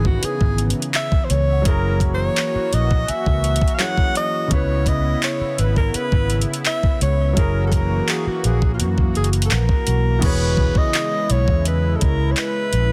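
A warm alto saxophone carries the melody with light vibrato, subtone and scooped notes in a jazz style, its line trailed by delay over a longing, sensual contemporary R&B groove at 84 BPM. A dark, foam-muted electric bass and a produced drum kit with knocking kick, metallic hats and handclaps sit up front, while a shimmering, detuned pulse-width pad holds sustained chords and a baby grand piano with audible action noise stays in the background. A bell-like celesta adds very soft touches from 1.3 to 4.0 seconds and again at 10.2 seconds, as the harmony moves between C#m7 and F#7 before settling on E6, all within a dense, heavily limited modern mix cut from a longer piece.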